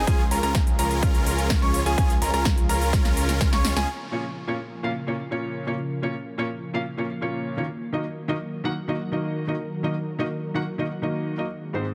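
In this powerful, anthemic festival progressive house excerpt, a straight 4/4 drop sounds from the start, with huge, bright supersaw chords, a thick detuned saw bass and warm grand piano arpeggios pumping over a warbling, chorused vintage unison pad, the supersaws and piano also trailing tape echo. A punchy, overdriven electronic kick and a big-room kit of crisp hats and a punchy snare join at 0.1 seconds, driving the drop into a drum fill from 2.9 seconds. After the drop ends at 3.9 seconds, an intimate, felt-muted upright piano accompaniment enters at 4.1 seconds, soft and up front, over the sustained pad.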